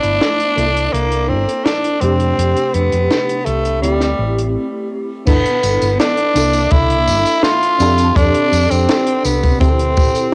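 A raspy, growling tenor saxophone sits up front with a jazz-style solo melody and vibrato, washed in cassette tape and tape echo, in this dreamy, faded vaporwave cut at 83 BPM in G mixolydian. A mellow, warbling FM electric piano with ensemble chorus plays the G69, C13, F69 and D9sus4 changes beneath it, while a round, hollow-body short-scale electric bass and a compact cocktail kit with dark cymbals and a high-tuned snare keep a straight 4/4 groove. After a stop from 4.5 to 5.3 seconds, a punchy, dry kick drum joins at 5.3 seconds, all set in a moderate spring reverb as a home recording on cassette.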